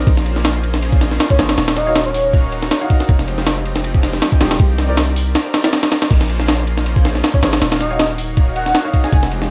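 A lush, detuned sawtooth pad with chorus and cassette warble sits in the background alongside a very quiet, clear grand piano playing stabs, while a deep, up-front 808-style sine bass sustains beneath minor ninth chords in this nostalgic, raw drum and bass cut. A gritty, compressed breakbeat kit, pitched up with a thumpy kick, high-tuned snare, hi-hat, ride and crash, drives the drop from the start with a slight swing and tape grit. An airy, dreamy lead with vibrato, a sub octave and dub echo floats in at 1.3 seconds and returns at 7.3 seconds, all steeped in light reverb and the character of a home cassette recording.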